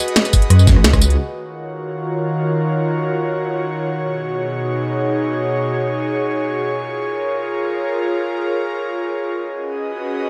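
An airy, breathy pad with chorus opens this soulful, dreamy liquid drum and bass excerpt on sustained chords in moderate stage reverb, joined during a brief drop by a tape-warm kit of cracking snare, metallic hats, rim click and tambourine, a knocking electronic kick and a menacing, saturated detuned saw bass, before the drums and bass fall away by 1.2 seconds to leave the pad alone under a filter sweep.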